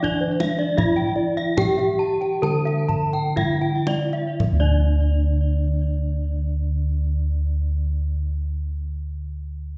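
Brilliant and shimmering, this fragment of Balinese gamelan in 4/4 moves at 56-84 BPM and slows over its first 4.4 seconds. A vintage, band-limited bronze metallophone struck with a wooden mallet carries the melody, while a bright, airy horn-mallet metallophone with tape echo and a second wooden-mallet metallophone entering at 0.2 seconds ring out arpeggios, their paired tuning producing beating shimmer. Dark, round bossed gongs sit up front on the bass, and a deep, close, dry kendang drives the percussion until 4.9 seconds, all heard from further back in a reverberant recital hall.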